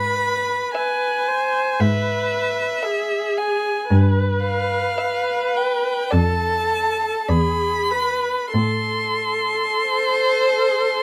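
Freely rubato at a slow 45 to 58 BPM in 4/4, this melancholic, yearning classical movement for string quartet, cut from a longer piece, opens with a warm, expressive violin melody high in its range, sung with vibrato, portamento and a soft attack. A second violin joins at 0.7 s with a line beneath it, while a rich bowed viola gives accompaniment and a focused cello carries the bass until 9.6 s. Closely miked with little reverb, the harmony moves from E/G# through Em/G, Dm/F and E7 to settle on Am.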